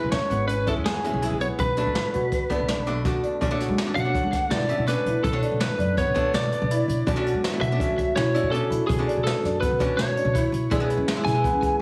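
Heavily compressed with a radio-like sheen and moderate studio reverb, this driving, intricate progressive instrumental at 164 BPM in 5/4 and B dorian sets a bright, twangy, slightly broken-up lead guitar with digital delay up front on the melody, over a dark, hollow-body archtop guitar, smooth vintage grand piano arpeggios, woody, thumpy pizzicato upright bass and a distant, roomy brushed drum kit with a punchy kick, while a metallic, ringing vibraphone with slow motor vibrato joins in the background at 3.4 s as the chords move from C#m7 and Bm7 to a long Bm9 before settling on E/B.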